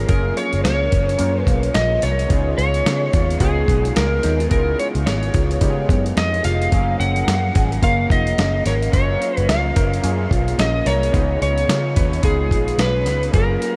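Indie pop with a bedroom-pop haze, this laid-back excerpt moves at 109 BPM in 4/4 with a 16th-note swing, set in F# major and tuned to A4 = 444 Hz. An up-front electric slide guitar, fingered and slightly broken-up, carries the melody between G#4 and F#5, colored by subtle chorus and analog delay. Beneath it, a dark electric guitar through a small old amp sits in the background with a lo-fi edge, analog chorus and warbly pitch drift, while analog keys add a round, detuned sawtooth tone with a filter sweep, fast attack and chorus. A foam-muted, amped electric bass gives a round low end and drops out at 13.6 seconds, and a dusty, sampler-style drum kit enters at 0.1 seconds with a thumpy kick, medium-tuned snare and hi-hat, compressed and gritty. The harmony rocks between F#maj7 and C#7, and the whole mix is soaked in a huge ambient reverb that leaves it dreamy, cut from a longer piece.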